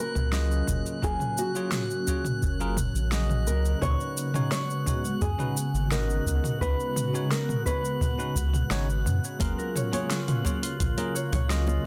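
A straight 4/4 deep house groove at 86 BPM, built on a deep electronic kick and a layered kit with a fat snare, drives this smooth sunset chillout excerpt in F# major: a round, up-front analog bass and a bell-like tine electric piano with delay support a small, thumb-plucked nylon-string guitar melody with delay until 9.0 seconds, while a shimmering, ethereal pad with chorus, phaser and reverb holds F#maj7 and C#7sus4 chords beneath a glassy glass-harmonics texture of drifting overtones, and at 9.4 seconds ringing Celtic harp arpeggios with delay arrive alongside bright congas and bongos in the background.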